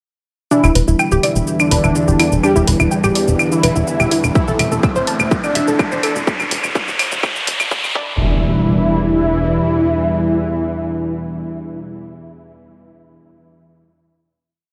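Driving and dark, this short melodic techno piece in E minor at 125 BPM builds from 0.5 seconds with a fat, detuned analog lead riff over a lush unison pad, a bright arpeggiated pluck under a filter sweep, a tight galloping sequencer bass, an overdriven house kit of claves, shaker, toms and hats, a punchy four-on-the-floor kick from 4.4 seconds and a tense string-like drone in the background from 1.5 seconds, as a riser climbs into a final impact at 8.2 seconds, all captured as a dry, gritty hardware recording with cassette tape character.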